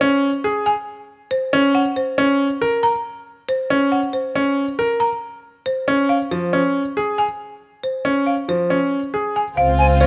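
Set in a driving 5/4 with a straight feel, this brief excerpt from a longer classical piece in the minimalist pattern style feels hypnotic and propulsive. A woody, rustic marimba struck with hard mallets carries the melody throughout, its dry, percussive tone riding over brilliant, up-front piano arpeggios that run the full length. A second piano part adds a single low accompaniment note between 6.3 and 8.8 seconds, its polished tone carrying a long sustain and audible action noise. Near the close, at 9.6 seconds, the texture blooms as a distant, dark French horn takes a second line, lush bowed strings hold sustained chords with vibrato and portamento, and a dark double bass section anchors the bass. A hollow, pure flute slips in a brief tongued arpeggio note at 9.8 seconds. Close, detailed microphones and light reverb keep the sound intimate and clear.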